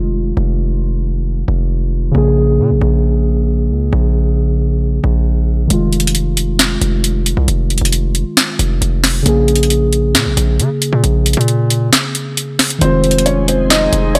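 A digital-sounding ambience frames this eerie, hard-hitting trap excerpt in F minor at 135 BPM with a half-time feel, where muted, felt-like synth keys with chorus and a distorted, saturated 808-style bass sit together from the start over Fm7 and Bbm7 chords. A trap drum kit with a sharp snare and metallic hats enters up front at 5.7 seconds, and the kick drops out just before a dark, mellow concert grand piano with tape echo takes the melody at 12.8 seconds. A glassy FM pad with ensemble chorus and reverb joins faintly in the background at 13.1 seconds.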